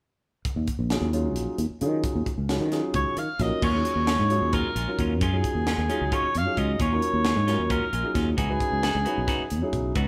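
Recorded live in a stone room with moderate reverb, this nocturnal, funky electric jazz fusion in 7/8 at 265 BPM in Eb minor sets a round, up-front fretless electric bass and a tight funk drum kit with a high-tuned snare from 0.5 s beneath a dark, long-sustaining baby grand piano that enters at 0.9 s. A mellow, distant soprano saxophone solo enters at 3.0 s, and bright, twangy clean electric guitar stabs join at 3.6 s as the harmony moves from Ebm11 to Dbm11.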